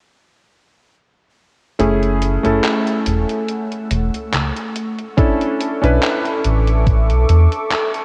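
Hazy and nostalgic, this slow 71 BPM vaporwave fragment in F# minor, with a lightly swung feel and cassette-tape character, opens at 1.8 seconds with a clangy, up-front electric grand piano through lush chorus and analog delay, a thick, warbling detuned unison pad under a filter sweep, a glossy, dark pulse-and-sawtooth synth bass, and detuned 8-bit drum-machine handclaps and hi-hat in gated reverb, while a thumpy electronic kick joins at 5.2 seconds as the harmony moves from F#m7 to Bm11.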